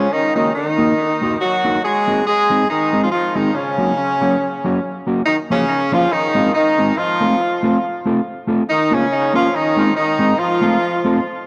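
Swung eighth notes in 4/4 drive this joyful, upbeat ska clip from a longer piece, where a tight, up-front horn section with light vibrato, octave doubling and a smooth top carries the melody over a dark, clean, fingered electric guitar accompaniment, both parts touched with tape echo and set in a moderate echo chamber reverb with small room ambience, as the harmony moves into a new section at 5.3 seconds.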